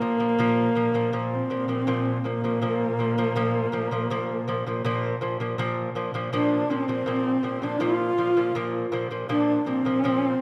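A moderate concert-hall reverb and a dark production frame this short cut from a longer Mongolian folk piece in the Bb gong mode, moving at a straight 81 BPM in 4/4 with a vast, proud mood over a single Bb5 chord. Up front, a husky, woody horsehead fiddle carries the melody with vibrato and portamento, while a bright, delicate fingerpicked lute with double nylon strings plays arpeggios, and a bowed cello holds a close, sombre Bb2 drone in the background until 6.4 seconds. At 6.3 seconds a pure, bamboo-toned low xiao enters in the background with a tongued, vibrato-touched second line for the closing section.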